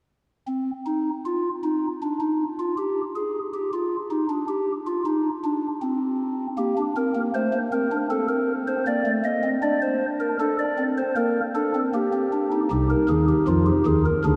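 This baroque-style classical fugue in three parts sets a driving, serious mood at 78 BPM in a straight 4/4, in C minor with tuning at A4 = 441 Hz. A solo chamber organ on a stopped flute stop carries every voice, spanning C2 to Eb5 with a soft, hollow, mellow tone and a touch of chiff at the start of notes, placed up front. The opening lines move in bare counterpoint before the harmony takes shape around Gm/Bb at 6.6 seconds, passing through Adim/C, D5 and Gm/Bb again. At 12.7 seconds the music reaches C minor and a new passage begins, carrying on until the organ stops at 14.4 seconds. A long cathedral reverb of 6.1 seconds surrounds the intimate chamber voicing with a deep, lingering space, and the short excerpt is cut from a longer piece.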